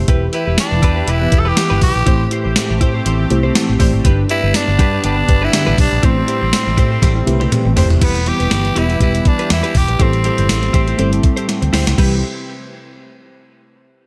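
A mellow FM electric piano, soft and round with a chorus and phaser shimmer, opens this nostalgic, glossy 1980s-style pop excerpt alongside a bright, evolving sawtooth pad in the background and a dark, foam-muted fingered electric bass. At 121 BPM in 4/4 with a light sixteenth-note swing, a gated digital drum machine sits up front, its thumpy kick and gated-reverb snare joined by hi-hat, tambourine, crash and toms, with fills at 7.0 and 11.5 seconds. A clean, compressed electric guitar recorded direct plays a riff through analog chorus and digital delay, while the electric piano adds a brief fill around 3.3 seconds. A raspy, gritty tenor saxophone carries the melody with vibrato from 0.4 seconds, and detuned synth brass stabs from 1.2 seconds, dark and chorused, stay in the background. The chords move between Em and Am7 with a turn to G, landing on Cmaj7 at 12.0 seconds, all within a light reverb.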